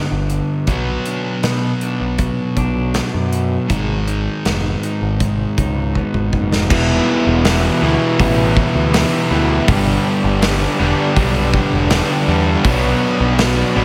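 A big arena sound bathed in lush hall reverb frames this brooding, angsty quiet-loud alternative rock fragment in E minor at 80 BPM. An up-front sludgy distorted guitar riff, a growling overdriven bass and a punchy acoustic drum kit drive beneath a clean electric guitar playing picked arpeggios in the background. After a drum fill, the clean guitar stops at 6.7 s and two bright overdriven riff guitars join further back, one a double-tracked cranked stack with slapback echo and the other compressed, while from 7.6 s a silky, dark string machine adds very quiet sustained chords with phaser and ensemble chorus as the harmony moves from Em through G to Bm.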